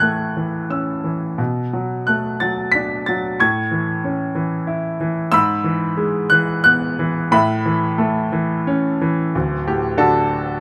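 A clear, natural-sounding grand piano sits up front in this moody, cool passage of lyrical classical solo playing, cut from a longer piece and set in a three-beat metre at 90 BPM with uneven, rubato timing. Its range reaches from deep bass to high treble, and the harmony moves through A, Bm7, Amaj7, Eadd9/G# and Aadd9 before shifting to D at 9.3 seconds as a new section begins. A light reverb gives the piano a touch of space.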